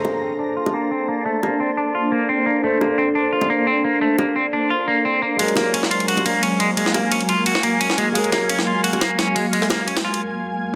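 Liquid drum and bass at 174 BPM in 4/4, this dreamy, lush excerpt moves from Bbmaj9 to Gbmaj9 at 5.4 seconds. A shimmering, ethereal pad holds sustained chords throughout, its detuned unison voices given an octave-up shimmer, granular texture, chorus and built-in reverb, with a dark edge underneath. An overdriven tine electric piano plays accompaniment with a barky, gritty tone through a combo amp, colored by phaser and delay. Up front, a bright, clean semi-hollow electric guitar picks arpeggios treated with harmonic tremolo, a low-pass filter and tape echo, while tight, high-tuned bongos played with soft hands add percussion in a small-room sound. At 5.4 seconds a compressed, pitched-up breakbeat kit enters with a high-tuned, softly clipped snare and filtered ride cymbal, sitting forward over a moderate plate reverb and a dense, heavily limited master.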